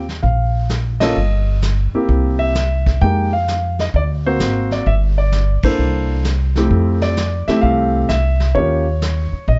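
A jazz piano trio piece in a swung 4/4, with a late-night, smoky mood, cut from a longer performance. The grand piano carries the melody up front, its short-sustained notes set in a plate reverb. The pizzicato upright bass sits close beside it with a woody, steel-strung tone, and a vintage brush kit joins at 0.1 seconds with brushed snare, hi-hat, ride cymbal and a punchy kick, its top end rolled off. The trio hits accents together at 0.9 and 5.6 seconds over colorful harmony that moves from Ebsus2 through Fm11, D7b13 and C13 before a new section opens on Fmaj7 at 6.7 seconds. Light reverb and a dark, warm production give the whole trio an intimate, smoky glow.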